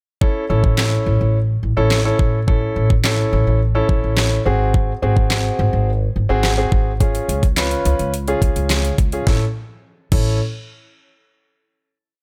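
The piece opens at 0.2 seconds with a warm concert grand piano and a smooth R&B drum kit, setting up a euphoric, summery dance-pop groove at 106 BPM in A major. The piano plays syncopated chord stabs in close voicing, intimate and polished, with audible action noise, long sustain and a sidechain pumping effect. The drums are electronic and produced, with a knocking kick, a deep snare layered with handclaps, metallic hi-hats and crash cymbal driving a syncopated pop beat up front. An upright bass joins at 0.5 seconds, plucked pizzicato with a woody, dark tone from steel strings, playing an off-beat line that also pumps with the sidechain. The harmony moves from A through G#7 and C# before landing back on A for a final chord at 9.3 seconds, all set in a small room reverb that keeps every part close and present.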